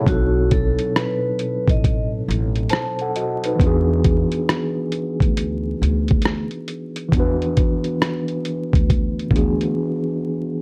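A slow, swung 4/4 groove at 68 BPM drives this nostalgic, dreamy lo-fi hip hop excerpt, carried by a compressed, pitched-down sampler-style kit whose thumpy kick, hi-hat and rim click sound muffled and overdriven, placed up front. A woody pizzicato upright bass with steel strings sits low beneath it, while a mellow, clean tine electric piano, heard through its built-in speakers and also up front, holds the accompaniment across the whole passage. A vibraphone played with medium hard mallets adds a brief melody, metallic and ringing yet smooth and dark under a slow motor vibrato and plate reverb, and it drops out of the texture by 2.1 seconds. The harmony moves from B7b9 to E7, and by 9.8 seconds the drums and bass have stopped, leaving the electric piano alone for a short break. Light reverb, a dark, warm production and a bed of vinyl crackle surround the whole recording.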